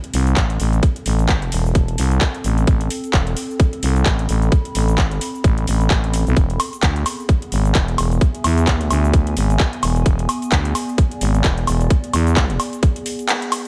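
A swung sixteenth-note groove at 130 BPM drives this bouncy, aggressive bass house cut, with a tight, up-front electronic kick and a garage kit of handclaps, metallic hi-hats, shaker and woodblock set in studio reverb. A thick, growling FM bass with tube saturation sits forward in the mix and pumps with sidechain compression, while a warbling, nostalgic lo-fi pad, detuned and dark with chorus, sustains underneath with its own sidechain pumping. The harmony in A harmonic minor moves from Am to E at 6.4 seconds, and the band hits an accent at 13.3 seconds.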